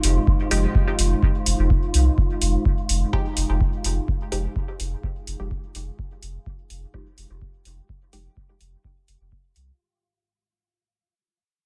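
Set in a digital ambience, this meditative, nocturnal dub techno cut fades out across its whole length over a single Fm9 chord. A round, soft sub bass pumps up front from the start alongside overdriven, metallic hi-hats, with a tape-warm deep kick arriving at 0.3 s. Above them a moody, detuned sawtooth pad with chorus and reverb holds sustained chords alongside a breathy, wind-like noise layer, while a muted, filter-plucked chord stab enters at 0.5 s, swept by a filter and smeared with phaser and dub echo.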